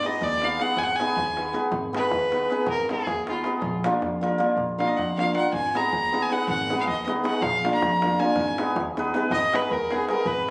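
Captured on a phone in a small room, this short cut from a longer Balkan wedding-band piece has a compressed sound wrapped in a club-like reverb. Set in 5/8 with a straight feel, the mood is fiery and restless. A nasal, reedy fiddle with a gut-string tone carries the melody up front, trailed by tape echo, and takes a solo from 1.7 to 9.3 seconds. Beside it, a hammered dulcimer rings and shimmers in accompaniment, while a woody pizzicato upright bass supplies a dark, thumpy low end. Further back, a deep clay-shell darbuka struck with hard hands adds a live-room beat as the harmony moves between Abm and Bb.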